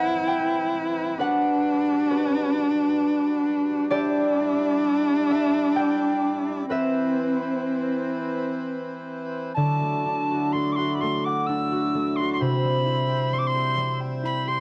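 The fingerpicked concert harp rings out up front through this wistful, pastoral Celtic slow air, carrying the accompaniment from the first moment in a rubato 3/4 at around 65 BPM in D mixolydian. Beneath it, a hand-pumped harmonium holds reedy, breathing chords that sound close and dry, while a single bowed cello plays a dark, woody second line sul tasto with vibrato until 9.0 seconds. At 9.5 seconds a wooden whistle enters with the melody, pure and touched by vibrato, its crisp chiff sounding somewhat distant and unsteady. The harp, harmonium and cello carry the soft grain of cassette tape, and light reverb gives the home recording a modest sense of space. The harmony drifts through Cmaj7, Gmaj7 and Em7 before shifting to Dadd9 as the second section begins, and the piece is cut from a longer work.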